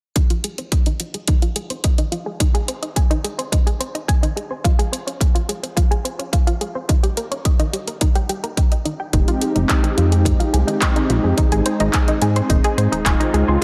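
Nu-disco with a cosmic, sensual mood, this passage cut from a longer piece moves in a straight four-beat groove over a progression that circles through Fm7, Ab, Dbmaj7 and Eb. From 0.2 seconds, a round, bright analog pluck plays arpeggios, its sawtooth and square-wave tone reinforced by a sub octave and treated with chorus, sidechain pumping, a diffuse ambient delay and a filter sweep that runs the whole way through. The drums start alongside it: a punchy, overdriven electronic kick sits up front, while a layered house kit adds handclaps and hi-hat with its own overdrive, both re-recorded in a large room. At 9.1 seconds a smooth, detuned sawtooth pad enters with a soft attack and long release, colored by chorus, sidechain pumping and tape echo. A glossy, retro chorused synth bass arrives at the same moment, mixing pulse, sawtooth and triangle waves with ring modulation and a filter pluck to give a mellow, up-front low end. 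The whole is wrapped in light reverb and digital ambience.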